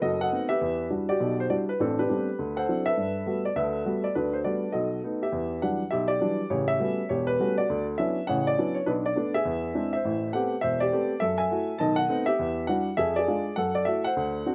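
Jazz for solo baby grand piano, relaxed and swinging, with a warm, natural tone that sits up front in a dry, roomless outdoor sound. Rich extended chords such as Em9, Am11, Gmaj9 and Dmaj13 carry the harmony, and the piece moves into a new passage at 5.3 seconds. This 14.5-second fragment is cut from a longer performance.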